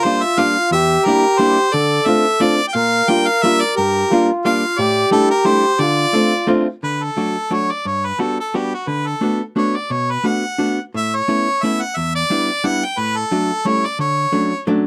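A clear harmonica sings the melody with light vibrato from the start, alongside a reedy, round accordion second line and a clean, picked hollow-body archtop guitar in this whirling, nostalgic musette waltz at 176 BPM in 3/4 with a gentle swing. The tune opens in D minor over chords such as Gm7, Em7b5 and A7sus4, then brightens into D major at 6.8 seconds; the accordion has fallen away just before, at 6.6 seconds, and the harmonica and compressed electric guitar carry on through Gmaj7, Bm7 and Aadd9 to a closing Dmaj7. Close, detailed microphones and light reverb keep the harmonica and guitar up front in this excerpt cut from a longer piece.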